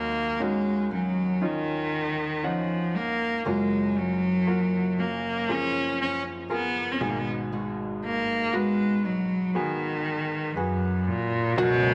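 A solo bowed cello sits up front with a rich, focused tone and expressive vibrato, carrying the melody of this emotional, heartfelt pop ballad at a slow 59 BPM in straight 4/4. Beneath it, a clear, natural concert grand piano provides the accompaniment, reaching down into a deep bass. A dark, small-sounding nylon-string guitar is fingerpicked in arpeggios in the background. The harmony moves through D#m7, F#maj7 and G#m7, with the instruments tuned to A4 = 435 Hz. Near the end, at 11.6 s, a very quiet cello section enters with a soft, distant, floating second line played sul tasto, and a barely audible glassy FM pad with an ethereal, mellow quality appears at 11.9 s. The whole passage is bathed in a wet echo-chamber reverb with a small-room ambience, and it is cut from a longer piece.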